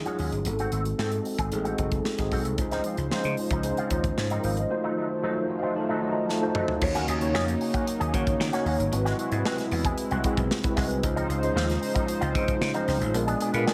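A mellow, up-front tine electric piano with ensemble chorus provides the accompaniment in this polished 1980s jazz-funk pop excerpt at 114 BPM in 4/4, its clean voice carrying an urban, bittersweet mood over chords that move from Ab7b9 through Dbmaj9 and Ebm7, with an electric piano fill at 5.2 seconds. A bright, growly slap bass and a punchy studio drum kit with bright cymbals drive the groove, while a dark, compressed guitar riff runs through an envelope filter and a smooth, detuned sawtooth pad with chorus and tremolo enters in the background at 2.6 seconds. A tight, distant horn section arrives only at 13.5 seconds during the closing band accent, all set in light reverb and small-room ambience.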